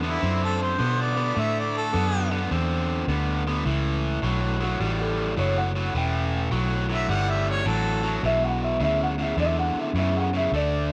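A swung 105 BPM blues in A mixolydian struts with laid-back swagger as a bright, overdriven electric guitar riff and a dark, round, foam-muted bass sit up front throughout, while a slightly broken-up lo-fi electric guitar with analog chorus carries the melody in a brief opening phrase and again from 4.6 seconds and a soft-attacked harmonica with light vibrato and scooped notes adds an overdriven jazz-style second line over D9, A9 and Esus2 chords in light reverb, in this clip cut from a longer piece.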